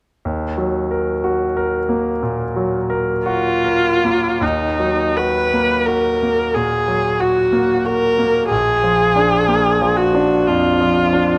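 Romantic classical duo for viola and grand piano in Eb minor, slow and rubato at 50-63 BPM in 4/4, melancholic and solemn. A bright, polished concert grand with deep bass and long sustain sets out the accompaniment up front from 0.3 seconds, then a single rich, focused bowed viola with vibrato enters at 3.3 seconds to carry the melody, also up front, while the harmony moves from Eb minor to Bb7 at 8.5 seconds, all captured by close, detailed microphones with light reverb in this passage cut from a longer piece.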